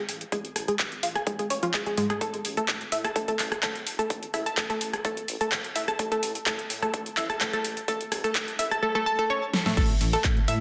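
Progressive house in a euphoric, uplifting build-up from a longer piece, where a round, chorused analog pluck arpeggio sits up front under a filter sweep and sidechain pumping, a punchy layered electronic kick and a big-room kit of huge snare, metallic hi-hats, handclaps, rim click, cabasa and crash drive it toward a drum fill at 9.5 seconds, and a dark, rumbling detuned saw bass pumps in the background, all within a dense, heavily limited mix washed in digital room reverb.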